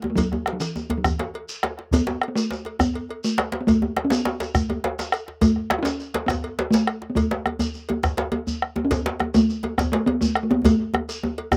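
The talking drum, bombo and two djembes start together at once, the talking drum carrying a resonant melody between E3 and E4 that sits up front in this driving, earthy West African drum ensemble piece. The pulse moves at 138 beats per minute in a straight 12/8 within A major pentatonic, with a round bombo underneath, one warm, deep djembe placed forward and a second, tight, cracking djembe played with hard hands, very quiet in the mix. From 0.2 seconds a metallic cowbell joins close and dry, trailed by a short slapback echo, while a grainy, mellow shekere sits far back in a large-room space. The overall sound is outdoor and largely free of reverb, keeping the drums immediate and earthy. A drum fill arrives at 10.7 seconds, and the passage ends abruptly, cut from a longer performance.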